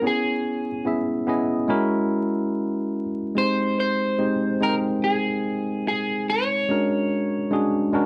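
A slightly broken-up electric guitar, picked through a small old amp and placed up front, carries the melody of this cinematic, bittersweet soul excerpt until 7.9 seconds. Alongside it, a worn, slightly out-of-tune tine electric piano plays clean, warm accompaniment through a combo amp, moving through Dbm7, Gb9, Abmaj7 and Bb7alt over a swung 16th-note feel until 8.1 seconds. Moderate spring reverb and vinyl crackle surround the short passage.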